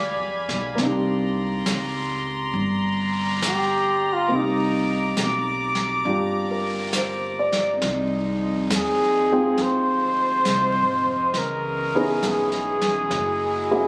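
A breathy, mellow trumpet solo with light vibrato opens this melancholic, smoky jazz ballad fragment in C minor at 68 BPM in a swung 4/4, carried over a polished, present baby grand piano, distant bowed chamber strings holding soft-attack, floating chords, and a woody, growly pizzicato upright bass, while a vintage brush kit of snare and hi-hat with a rolled-off top enters at 0.5 seconds, the harmony drifting from G7b9 to Cm9 and on to Fm7 at 7.8 seconds, captured on a phone in the room with light club reverb.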